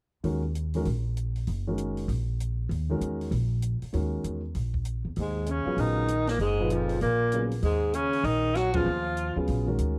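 A breathy tenor saxophone carries the melody from 5.2 seconds, its subtone whispered and intimate, with vibrato, a soft attack and scooped notes, sounding up front yet slightly distant and roomy. Alongside it, a brilliant trombone plays a punchy, forceful second line with light vibrato and its own scooped notes. This modal jazz excerpt has a searching, hypnotic mood and a swung feel, built on a lingering minor seventh chord that opens into a minor eleventh when the horns enter. Underneath, a baby grand piano comps intimately with audible action noise, a woody pizzicato upright bass on steel strings sits up front, and a compact cocktail kit adds dry ride, hi-hat, a high-tuned snare, a tight kick and dark cymbals. The whole band hits an accent at 8.7 seconds, and the production is dark with little reverb.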